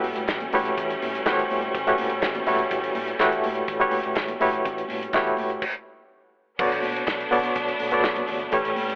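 A barky, lightly overdriven electric piano with fast tremolo leads this glamorous, sultry disco excerpt up front, over lush bowed strings, a round fingered bass in the background, a muffled lo-fi soul drum kit with dark cymbals, very quiet high-tuned congas and crisp group handclaps that enter at 0.3 seconds, all heard through a small, lightly reverberant room with a telephone-like tone, before a stop from 5.6 seconds gives way at 6.6 seconds to a move from an A13 chord to Bm7.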